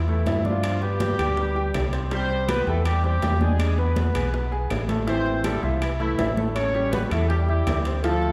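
A mellow horn section with vibrato and octave doubling carries the melody from the first moment, over a dark, round fingered electric bass that sits up front, in this danceable, passionate salsa excerpt in A minor at 162 BPM. A clear concert grand piano with audible action noise and long sustain accompanies through A5, G7, Cmaj7, E7, Am7 and A7. Ringing high-tuned congas, very quiet tight bongos, distant metal-shell timbales and woody claves fill in the percussion, all set in the wet reverb of a church or concert hall.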